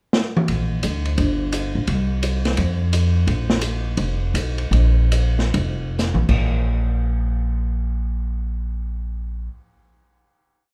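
A woody, pizzicato upright bass in a two-feel carries this short, sophisticated swung jazz piece in B-flat major, entering at 0.5 seconds to join an up-front, small-room drum kit with dark cymbals, a boomy kick and a stick-played ride cymbal pattern; the tempo moves between 120 and 172 BPM and slows into a drum fill and a final hit, with the bass ringing until 9.5 seconds under light reverb.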